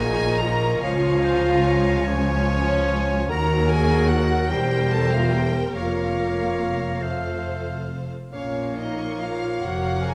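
Elegiac and melancholic, this slow classical fragment in Bb minor moves at 48 BPM in a rubato 6/8, with a rich, smoothly bowed violin section carrying the vibrato-laden melody while a bright, vintage-tinged clarinet, a clear, distant oboe, a very quiet, airy flute and a second, background violin section weave supporting lines. Beneath them, a roomy bassoon and a soft-edged viola section with expressive portamento provide accompaniment, a French horn section holds sustained chords, and a close double bass section joins a distant cello section on the bass. The whole ensemble sits in a moderate scoring-stage reverb as the harmony passes from Bbm through Db, Ebm and C7/E to F before settling back on Bbm.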